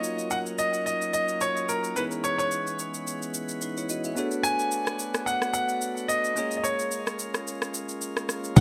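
Late-night and deep, this amapiano excerpt at 109 BPM sets a brilliant, up-front grand piano melody with digital delay over bell-like tine electric piano, a chiffy flute-stop pipe organ holding chords through Ebm7, Dbm7, Bm7 and Bbm7, and a soft-kicked electronic R&B kit of crash, rim click and shaker, before a round, dark log drum bass and close, dry, high-tuned congas arrive at 8.6 seconds.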